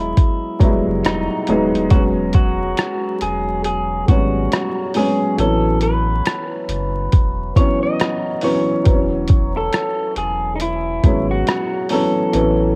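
Lo-fi hip hop with a mellow, nostalgic mood, this short passage cut from a longer piece moves at an unhurried pace with a gentle sixteenth-note swing. A dark upright piano sits up front with a worn, woody tone, audible action noise, a slightly detuned character and long sustain, carrying the accompaniment through lush Emaj9, E69 and A69 chords. Over it, an electric guitar through a small old amp plays the melody with a fingered, slightly broken-up sound, softened by cassette tape and an analog delay. Beneath them, a round sine sub bass holds the low end with a fast attack and sustained notes. The sampler-style drum kit comes in at 0.2 seconds and stops at 12.6 seconds, its compressed, pitched-down, muffled hi-hat, rim click and thumpy kick placed up front. Light reverb, vinyl crackle and the feel of a home cassette recording give the whole piece an intimate, faded glow.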